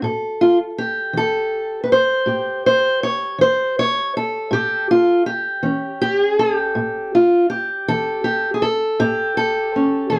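A slow, straight 12/8 pulse at 54 BPM anchors this gritty, swaggering acoustic country blues fragment, in which a lone fingerpicked steel-string parlour guitar with boxy, woody old strings sits up front over an A7 chord for its 10.2 seconds, wrapped in a moderate studio reverb and a dark production.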